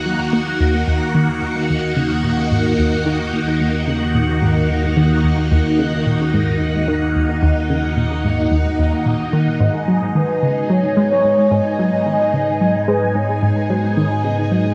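A tight, nasal sequenced synth riff drives this hypnotic, mysterious stretch of ambient space music, its detuned sawtooth notes plucked by the filter and carried by chorus and analog delay while a filter sweep runs across the whole passage. Alongside it, a phased string machine holds bright, swirling chords up front, its slow attack and long release smeared by ensemble chorus and phaser. An analog drone anchors the low end with a warbling, resonant pulse-width tone, and a bubbling texture of random filter steps floats high above, soaked in its own reverb. At 10.2 seconds an expressive portamento lead enters with a smooth, mellow melody colored by vibrato and lush chorus. The piece sits at 110 BPM in Eb minor, moving from Ebm to Abm7 at 9.6 seconds. A wet plate reverb and heavy echo give the mix a deep, cavernous space with a cassette-tape character.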